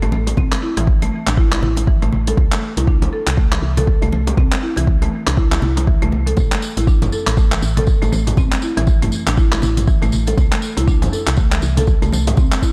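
A swung 16th-note groove at 120 BPM in 4/4 drives this hypnotic, spiritual afro house passage in A minor, cut from a longer piece. A deep, overdriven electronic kick sits up front from 0.4 seconds, layered with a distorted deep house kit of handclaps, hi-hat and toms that carries a small-room character. In the background, congas and round, low-tuned vintage bongos played with soft hands add acoustic texture, and a close, jingly tambourine enters at 6.4 seconds. A soft, dark FM bass with a fast attack and tube saturation anchors the low end, pumping against the kick. Above it, a buzzing marimba struck with hard mallets on hardwood bars spins dry, percussive, boxy arpeggios through a dub echo and the same sidechain pumping, over a harmony that moves between A5 and C. The production is dark and warm, with a small room ambience.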